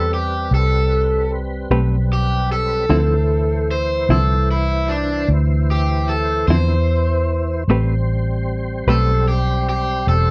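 The recording sounds dry and close, with little reverb, like a 1970s studio session. This brooding, soulful slow blues is cut from a longer piece and moves at 50 BPM in 12/8 in A minor, drifting from Am9 to Dm9 and back. A bright, overdriven semi-hollow guitar sits up front and carries a picked solo melody between D4 and C5 throughout. Beneath it, a full tonewheel organ holds sustained chords through a slow rotary speaker with light overdrive and chorus vibrato. A vintage muted fingered bass gives a dark, round, punchy low end, the loudest part in the mix. A clean, compressed electric guitar with tremolo adds fingered accompaniment from 1.7 to 9.1 seconds.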